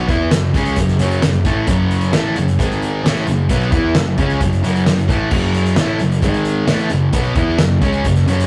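Three fuzz guitars and an overdriven picked bass open this brooding, angsty stretch of quiet-loud alternative rock, the guitars playing a riff that moves between F#m and G#5 while the bass holds down the low end. The loudest guitar sits up front with a bright, distorted fuzz, while a second, equally bright distorted guitar sits farther back in the mix. A third guitar is very quiet, double-tracked and compressed, adding a warm fuzz layer beneath them. The bass stays in the background, with a warm, fuzzy tone from its direct and amped overdrive. Entering at 0.1 seconds, the loose indie drum kit is up front, with a punchy kick, fat snare, hi-hat and dark crash cymbals in a pumping room sound. The whole cut, lifted from a longer piece, has the rough feel of a rehearsal room, with tube saturation and a moderate reverb of 0.6 seconds.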